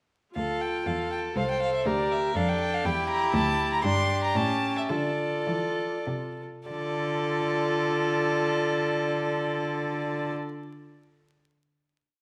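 A reedy first violin carries the stormy, urgent melody of this short, complete classical-period movement for string quartet in triple time, its light vibrato and gut-string tone set in a period style. Beneath it, an up-front second violin with a close, rich sound and a viola of similar period character weave independent inner lines and sustained chords, while a close cello supplies pizzicato and sustained bass. The rubato theme slows from 2.6 to 6.7 seconds before a final chord holds to the end, all heard in a moderate recital-hall reverb with a vinyl crackle.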